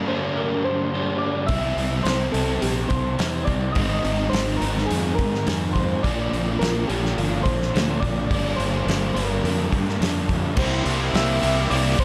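Light reverb and a small-room ambience give this hazy, wistful shoegaze and dream pop rock excerpt a close, softly blurred sound at a steady 106 BPM in 4/4, cut from a longer piece. Two overdriven guitars open together on riffs: one picked with a lush chorus, the other crunchier and set in the background with reverse reverb. Beneath them, a very quiet, twangy, lo-fi guitar through a small old amp picks arpeggios, while a gentle FM synth lead with a triangle tone, chorus and tape echo carries the melody. At 1.5 seconds a round, fuzzed fingered bass arrives up front alongside a loose acoustic indie kit with dark cymbals, a fat snare and a punchy kick under a rolled-off top. The harmony moves from Gm through Cadd9, Ab and Bbadd9 back to Gm, and at 10.6 seconds the chord turns to C7 as a bright, double-tracked distorted guitar slips in very quietly for the closing stretch.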